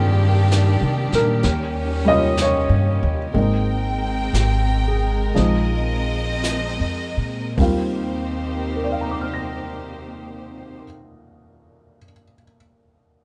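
Intimate and late-night, this slow swung jazz ballad excerpt, cut from a longer piece, gradually slows through its first 7.6 seconds as a dark, mellow baby grand piano with audible action noise carries the accompaniment until 13.2 seconds, lush bowed strings with vibrato hold sustained chords, a woody pizzicato upright bass sits up front, and a vintage brush kit with a punchy kick and rolled-off top enters at 0.5 seconds, all moving through Eb6, Abmaj9 and Bb9sus4 harmonies in a light reverb.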